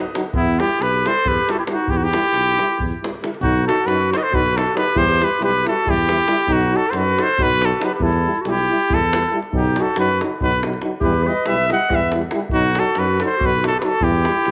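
A warm trumpet with light vibrato leads up front in this fiery, virtuosic Balkan brass band excerpt in 7/8, pushing along at 276 BPM in eighths and speeding up throughout, with a classically styled clarinet playing a second line. A mellow, smooth-topped tuba carries the bass, while a soft-attack French horn and a clear, vintage-tinged euphonium sit in the background as accompaniment and a tight davul drives the percussion in a live room. Set in E harmonic minor, tuned to A4 = 445 Hz, the harmony swings between Em and B, and the opening section gives way to a new one at 3.4 seconds, all bathed in a wet spring reverb with small room ambience.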